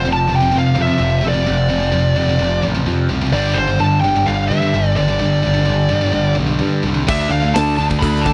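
A dark, high-gain lead guitar carries the melody up front, its distortion trailed by tape echo, while a growling, overdriven picked bass sits just as prominently beneath it in this relentless, epic heavy metal excerpt at 128 BPM in 4/4. Three riffing guitars fill the background: a biting, double-tracked overdriven one, a heavy distorted one and a very quiet scooped one, all moving through F5, G5 and D5. A tight metal drum kit with a rolled-off top enters only at 7.1 seconds, and the whole recording sounds dry and close, in a 1970s studio style.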